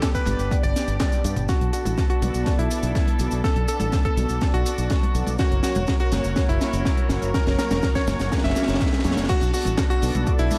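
A dark, warmly produced mix with light studio reverb and a faint mains hum carries this bittersweet, nostalgic italo disco piece, cut from a longer track. A cutting, vintage-toned electric grand piano leads the melody through tape echo and a low-pass filter, with a filter sweep from 1.5 to 9.3 seconds, over veiled, muted strings holding sustained chords and round, chorused synth brass stabs in the background. A punchy, dry electronic kick and a tight acoustic funk kit with hi-hat, crash, high-tuned snare, cabasa, handclaps and toms drive the straight 4/4 groove, with a drum fill leading into 1.5 seconds, while a brilliant, direct fingered electric bass holds down the low end.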